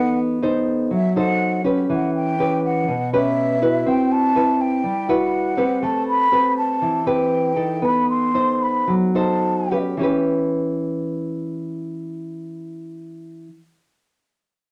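A concert flute and a nylon-string guitar begin together over a B7b9 chord, opening this smooth, wistful bossa nova in 4/4 with a straight feel, moving between 104 and 122 BPM in E harmonic minor. The flute carries the melody from E5 to C6 with an airy, hollow tone, a soft attack and gentle vibrato, taking the solo spotlight through the first 10 seconds. Beneath it, the fingerpicked guitar sits up front with a dark, classical character, and an occasional finger squeak adds intimacy. The harmony moves through Em6, Cmaj7#11 and Am9 before returning to B7b9, while the tempo slows from 5.8 seconds. The flute stops at 9.8 seconds, leaving the guitar alone on Em6 until 13.5 seconds in this fragment of a longer piece, with a wet studio reverb giving the room a soft glow.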